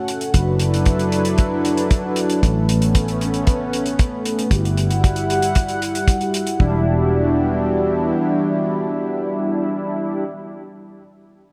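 Synthwave at 115 BPM in E dorian, driving and cinematic, with a slow-blooming sawtooth pad laying down sub-octave chords dusted with 12-bit sampler grit, round chorused synth-brass stabs with vibrato and delay, and a foam-muted, tube-saturated picked electric bass that pumps under a filter sweep, while a tight, up-front kick and a dry, rolled-off hi-hat drive the groove until both fall away by 6.7 seconds, the bass drops out at 8.1 seconds, and pad and brass sustain through a bright 1980s-style digital plate-reverb sheen.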